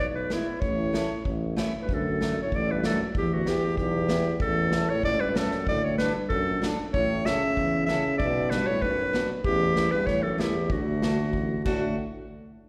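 A jolly, festive alpine folk dance in 2/4 opens with a clear, up-front clarinet carrying the melody over a warm, distant tuba with vibrato on the bass, joined by a boxy fingerpicked parlour guitar with audible finger squeak, an unplugged drum kit with a punchy kick, medium-tuned snare, crash cymbal and bundle sticks, and at 0.6 seconds a dark euphonium second line, the clarinet, guitar and euphonium touched by slapback echo, all heard as a live gig through the venue's PA with recital hall reverb, in a short cut from a longer piece.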